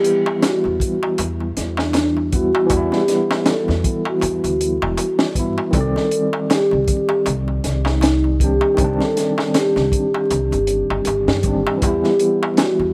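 A rough home-demo mix with vinyl crackle and studio reverb frames this smoky, melancholic trip hop cut at 79 BPM in E minor, swung on the sixteenths and tuned to A4 = 445 Hz, moving from Em to Cmadd9 at 5.7 seconds. A mellow, vintage vibraphone played with soft mallets carries the melody with slow motor vibrato and tape echo, over an overdriven tine electric piano whose gritty fast tremolo and tape echo come through a combo amp. Up front, a crunchy, saturated breakbeat kit with a tight kick and high-tuned snare drives the groove; a crisp metal-shell darbuka struck with hard hands joins at 0.3 seconds, and a woody, thumpy pizzicato upright bass on gut strings enters at 0.7 seconds.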